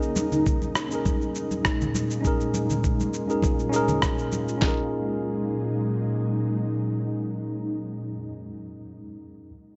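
Sunset chillout with a blissful, relaxed mood, heard as a brief excerpt cut from a longer piece in a straight 4/4 feel. A worn, slightly out-of-tune tine electric piano sits up front playing accompaniment through a tape echo, lingering until 9.5 seconds. Beneath it, an ethereal, airy pad of detuned sawtooth and triangle tones holds sustained chords with a slow attack and long release, thickened by ensemble chorus and its own reverb. A tape-warm electronic shaker and rim click opens the groove, with acoustic congas set back in a live room entering just after. The gritty, compressed drum kit then joins them, bringing a sampler-style character with a thumpy kick, fat snare and handclaps. The percussion drops away around 4.8 seconds as the harmony moves from C#69/A# to F#69. A moderate, lush hall reverb wraps the mix, and the top end is soft and rolled off.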